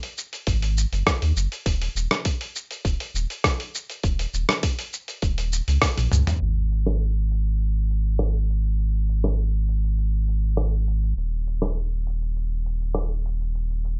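A gritty, compressed sampler-style soul drum kit of hi-hat, rim click, shaker and toms opens this meditative organic downtempo piece in Eb minor at 101 BPM, joined at 0.5 s by a deep, round sine sub bass with sidechain pumping and a tight electronic kick that drops out at 5.9 s, just before a drum fill at 6.0 s leads into the second section, all in a rough, muffled home-demo mix with light reverb.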